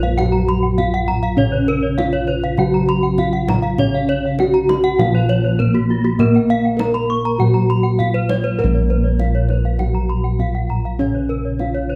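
Brilliant and hypnotic, this Balinese gamelan passage, cut from a longer piece, moves at 100 BPM in a straight 4/4 on a Bb pelog scale tuned to A4 = 441 Hz. A bronze metallophone carries the melody between Bb3 and Bb4, struck with padded disc mallets for a mellow, soft tone that sits in a boxy small room, while a second metallophone fills in the accompaniment lower down with a wooden mallet, dark and smooth in the background. Two further metallophones spin arpeggios up to around Db6 with horn mallets, both bright, one of them airy. Every metallophone is tuned in pairs, so their ringing bronze notes carry shimmering beats. Up front, the bossed gongs anchor the bass with a round, beating sound, and from 0.2 seconds the kendang adds tight, soft-handed strokes from a live room in the background. Close, detailed microphones and light reverb keep each layer distinct.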